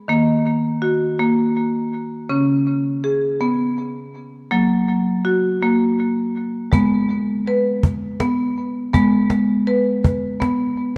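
World meditative tuned percussion in a hypnotic 6/8 at 54 BPM in G# minor, where a bright, woody marimba struck with hard mallets plays arpeggios through delay over D#m, C#5 and F# chords, before a close, up-front cajon with hard hands and faint snares joins at 6.7 s as the harmony lands on G#m, all set in a dark production with a wet echo-chamber reverb, cut from a longer piece.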